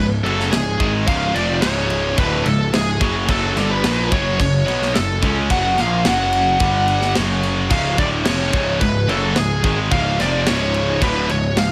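This heavy, aggressive metal excerpt opens at 109 BPM in a straight 4/4 with a stack of bright, picked rhythm guitars grinding out the riff in a low register, joined by a fuzz-laden electric bass with a growly, overdriven bite. A tight acoustic drum kit comes in at 0.3 seconds, its snug kick, medium-tuned snare and crash cymbals sitting mid-forward in a studio room. Over this, a high-gain lead guitar sits up front with a warm, distorted tone, carrying the melody between G#4 and F#5. The rhythm section blends three guitar layers: a double-tracked high-gain part and a scooped high-gain part, both very quiet, plus a tight distorted guitar in the background. The harmony moves from C# through F#5 and G5, then back to C# at 7.7 seconds, and a light reverb gives the whole passage some air before it cuts off at 11.7 seconds.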